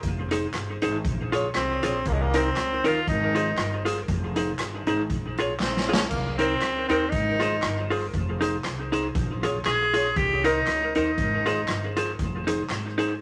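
A breathy, whispered tenor saxophone carries the melody up front from 1.6 seconds, its bright tone colored by light vibrato and scooped notes, in this joyful, cheerful ska excerpt at 118 BPM with a lightly swung feel, cycling through Fm7, Bbm7, Cm7 and Ab6. A clean, compressed hollow-body jazz guitar with dub echo plays accompaniment, while a woody pizzicato upright bass and an airy, polished street-band drum kit hold the groove. The kit has a big-room sound, a boomy kick and dark cymbals, and plays a drum fill at 5.6 seconds. Very quiet, crisp group handclaps sit close and dry in the mix, and a wet studio reverb surrounds the recording.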